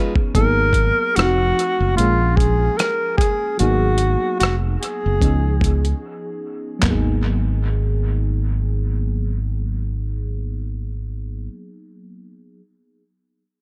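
A soft, round FM electric piano with chorus, phaser and dub echo opens this sultry, soulful neo-soul R&B piece at a swung 74 BPM in G# dorian, soon joined by a gritty, overdriven sampler-style drum kit with a thumpy kick, handclaps, hi-hat, rim clicks and toms, a growly, punchy fingered electric bass, and a breathy, whispered tenor saxophone with subtone, vibrato and scooped notes over chords such as G#m9 and C#9, until the sax drops out at 6.0 s for a brief break, the drums stop at 7.0 s, and the piano plays alone from 11.5 s in an echo-heavy digital ambience.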